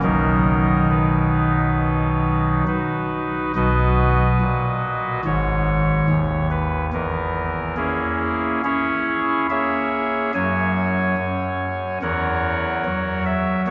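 A chamber organ opens on its own, its soft reed voice set on an oboe stop, with a gentle chiff at the start of each note and a close, up-front presence. This is a classical, chorale-style passage in 4/4, majestic yet serene, with beats that fall unevenly and lend it a breathing, unhurried pulse. The single organ part spans from deep G#1 tones up to G#5, carrying the whole texture alone from start to finish. After a brief opening phrase, a longer second passage begins at 3.6 seconds, moving through harmonies such as C#m/E and closing on an F#7/E that leaves the music poised rather than resolved. A long, wet cathedral reverb of about 5.7 seconds surrounds the organ in the space of a church or concert hall, while the top end stays soft and rounded, and the clip ends mid-piece at 13.7 seconds.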